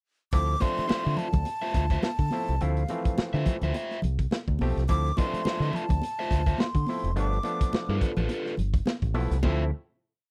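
A short, hypnotic funk piece in D dorian at 105 BPM opens at 0.3 s with a crunchy breakbeat kit playing a syncopated groove with ghost notes and a deep, round fingered bass riff anchored on the downbeat, both up front, while an overdriven auto-wah clav pushes stringy rootless chord stabs and a breathy, hollow jazz flute states hook phrases with vibrato. At 0.6 s a dark, clipped overdriven guitar and bright, high-tuned congas, slapping on two with open tones on four in the background, join the swung sixteenth-note groove as the harmony moves from Dm9 to G9. The flute drops out at 8.0 s, and the band lands on a final Dm9 chord at 9.4 s, all captured in a dry, close 1970s-style studio sound.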